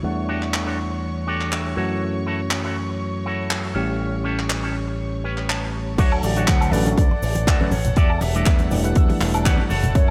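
Feel-good and groovy, this nu-disco excerpt moves at 121 BPM in D major with a light swing on the sixteenths. A tine electric piano played through a combo amp carries the accompaniment with vintage 12-bit sampler grit and dub echo, while a clear studio violin section holds biting, intense chords with light vibrato and sidechain pumping. Up front, a picked electric bass with an envelope filter sounds punchy and direct, joined from 0.3 seconds by a twangy, bright guitar riff through an envelope filter with subtle chorus and dub echo. A dry, damped 70s drum kit brings crash cymbal, handclaps, hi-hat and woodblock, and a clean electric guitar adds short fills along the way. At the drop at 6.0 seconds, an overdriven, layered electronic kick hits hard, very quiet cabasa and congas enter close in the mix, and a breathy concert flute takes the melody with a straight tone, soft attack and dub echo. 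The harmony moves from Em11 through F#m7 and A7 to Dmaj7 before returning to Em11, all within a studio ambience.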